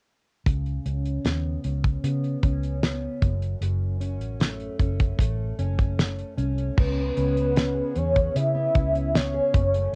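A hazy home cassette recording in a small, booth-like room opens this sunny indie and bedroom pop cut from a longer piece, moving at an easy 76 BPM in 4/4 over Bsus2/C#, F#m and C#m7. A jumbo steel-string acoustic guitar, fingerpicked and full-bodied under lush chorus, vibrato and a filter sweep until 6.8 seconds, sits beneath a dark, foam-muted, round vintage bass and an up-front, dry 70s kit with a fat snare, tight kick and dusky cymbals. At 6.8 seconds a soft, octave-layered synth lead takes the melody, mixing triangle, sawtooth and sine tones with a sub octave, tremolo, analog chorus and tape echo.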